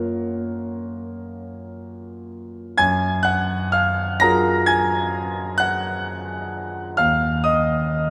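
The recording is bathed in a cavernous cathedral reverb with a 5.2-second tail, capturing a solo concert grand in a church or concert hall. This short passage of impressionist classical piano, cut from a longer piece, is hazy and dreamy in mood, unfolding in a slow 9/8 with free rubato. The piano sits up front with a clear, open tone, reaching from a deep bass at D#2 up to A#6. The harmony rests on F#maj7, shifts to F#maj9 at 2.8 seconds, and settles on a suspended D#sus2 at 7.0 seconds. The piano plays alone until the passage ends at 8.1 seconds, leaving a floating, unresolved impression.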